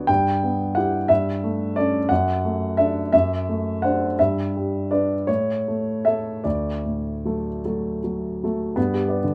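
Lyrical and passionate, this brief excerpt from a longer romantic character piece for solo piano moves in a lilting 6/8 at roughly 50-63 BPM in dotted quarters, with a free, breathing rubato. The grand piano sits up front with a warm, intimate, natural tone, and the clatter of its action is audible beneath the notes. Its range spans from D2 up to G5, tuned to A4 = 441 Hz, and a light reverb gives the sound a gentle sense of space. In D major, the harmony moves from Em/G through A7/G to D/F# and D7/F#, then settles on G before a brief unharmonized moment. It resolves to D at 6.4 seconds and touches G again at 8.8 seconds as the piano's phrase closes at 9.3 seconds.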